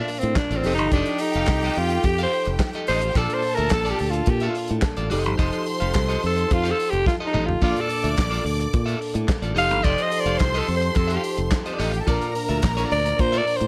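Disco with a glamorous, danceable feel, cut from a longer piece, built on a breathy, raspy alto saxophone solo up front over lush bowed strings, a twangy electric guitar at the edge of break-up with vibrato, a worn, slightly out-of-tune tine electric piano and a mellow French horn section holding chords in the background. A dry, dark soul drum kit with handclaps and a tight kick enters at 0.1 seconds, the growly, bright fingered bass joins at 0.2 seconds, and a drum fill lands at 7.1 seconds. The harmony swings between Bbmaj7 and F9 in a small room with light reverb.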